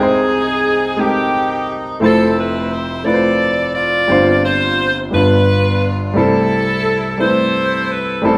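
Recorded live in one room with a wet, large studio reverb, this hopeful, uplifting gospel passage moves at 58 BPM in a straight 6/8, in C major. An edgy, punchy saxophone section carries the melody up front with light vibrato and a pop-style ensemble sound, while an intimate grand piano accompanies, its natural tone close enough to reveal the action noise. Over 8.4 seconds the harmony travels from Abmaj7/C through Fmaj7 and a G7sus4 resolving to G7, before settling on C6.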